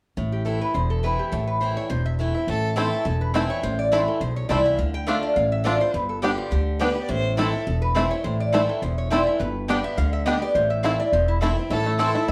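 This haunting, rustic bluegrass excerpt in A minor opens at 0.2 seconds with a bright, boxy picked acoustic guitar in a swing style and a growly upright bass, played pizzicato on steel strings and sitting up front, at a brisk 208 BPM with swung eighths. A lap resonator guitar takes the melody almost at once, its metallic, nasal slide tone played with fingerpicks and trailed by slapback echo and plate reverb. A clear, earthy fiddle with light vibrato adds brief bowed second lines, first at 2.5 seconds and again in short phrases later on. From 2.8 seconds a twangy, percussive banjo plays arpeggios, while a woody mandolin with double strings adds picked stabs from the background. The harmony moves from Am through Dm and G and back to Am, and the whole band is heard from further back in a wet studio room.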